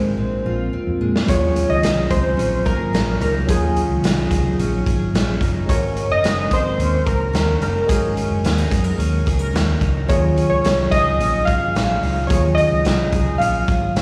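Warbling, detuned lo-fi synth keys carry a wistful, hazy melody up front in this bedroom-pop fragment, over a barky tine electric piano run through a combo amp, a full-bodied fingerpicked steel-string acoustic guitar set in the background, and a round, foam-muted vintage electric bass, with a raw garage drum kit bringing a punchy kick from 1.2 seconds, all heard as a live gig through the venue's PA with club reverb and small-room ambience.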